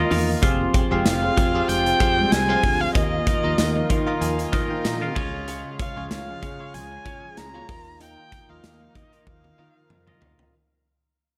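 A boxy, up-front erhu sings the melody with vibrato and portamento through a digital delay in this moody, urgent 1980s-style pop excerpt at 95 BPM with a light 16th-note swing, backed by a bell-like tine electric piano through phaser that plays a fill at 3.6 seconds, a sweeping resonant pad and mellow synth brass stabs in the background, a round fretless bass in lush chorus, a twangy twelve-string electric guitar riff, and a punchy big rock drum kit with bright cymbals and tambourine that fills from 9.3 seconds, all fading out over Fmadd9, Ebsus2 and Db chords in a light reverb.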